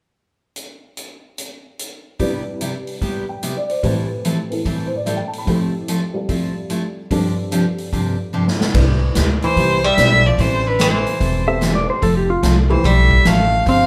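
A swinging big-band drum kit with a punchy kick opens this playful, down-home country and western swing excerpt alone, joined at 2.2 seconds by jangly, detuned honky-tonk upright piano and full-bodied picked acoustic guitar; after a drum fill at 8.3 seconds, thumpy pizzicato upright bass, a clear, up-front fiddle melody with light vibrato and a hollow-body archtop guitar second line enter, and a slide lap steel guitar adds a brief line from 11.5 seconds, with the band captured live in a roomy studio.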